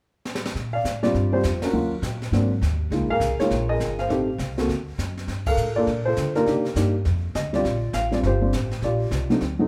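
A jazz piano trio plays with a sophisticated, warm mood and a swinging 4/4 feel, heard as a short slice of a longer piece. The brush kit opens with a quick fill at 0.2 seconds, its brushed high-tuned snare, hi-hat, boomy kick and dark ride cymbals sitting low in the mix behind the others. A pizzicato upright bass with steel strings and a woody tone stands up front, moving through a harmonic path that passes from Bb6 and Ebm9 to Db69, then through Am7b5 and Gm9 before settling back on Bb6. A dark upright piano carries the melody, its mellow, short-sustained notes placed close to the listener. The band hits shared accents at 1.6 and 5.4 seconds, and light reverb gives the feel of players performing live together in one room.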